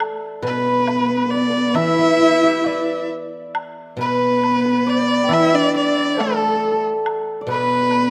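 A shimmering hammered dulcimer, a silvery guzheng plucked with fingerpicks and a close, dry woodblock open this short, pastoral passage of Chinese chamber music, cut from a longer piece. At 0.4 seconds a reedy large dizi joins very quietly from a distance, its bamboo tone buzzing faintly through its membrane. A moment later, at 0.5 seconds, a rich erhu takes the melody up front, smooth and even, with vibrato and gliding portamento. Beneath it a dark, husky horsehead fiddle bowed on horsehair strings adds a woody second line from further back, also sliding and singing with vibrato. The rubato feel keeps the mood graceful and unhurried, and a moderate stage reverb lends the ensemble a gentle sense of space.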